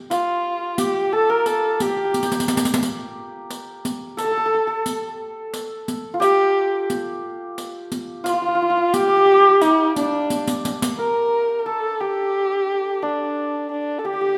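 A dark, woody kamancheh carries the melody in this hypnotic, soulful Persian modal piece, its bowed line sung by a single player with vibrato, portamento and a smooth top, sitting up front in the mix. Alongside it, a hammered santur plays a second line in the same register, its acoustic tone shimmering and ringing. A riq with bright jingles, close and dry, keeps the 6/8 pulse at 59 beats per minute counted in dotted quarters, adding short fills such as the one at 2.1 seconds. The riq drops out at 11.0 seconds as the music moves into a new section, leaving the kamancheh and santur to finish together. A moderate recital-hall reverb gives the ensemble a natural sense of space, and the recording is cut from a longer piece.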